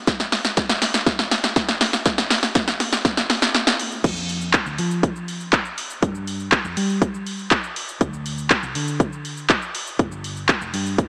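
A straight 4/4 house groove at 121 BPM opens this confident, energetic dance-pop piece at 0.1 s, with a layered electronic kit of punchy kick and snare, handclaps, hi-hat, shaker and crash cymbal sitting up front as a drum fill builds toward the drop. At 4.0 s the drop arrives and a dark, round, foam-muted vintage electric bass joins low in the mix, carrying a sidechain pump. A moderate cathedral reverb soaks the mix in a dreamy haze, heard as if through a small speaker.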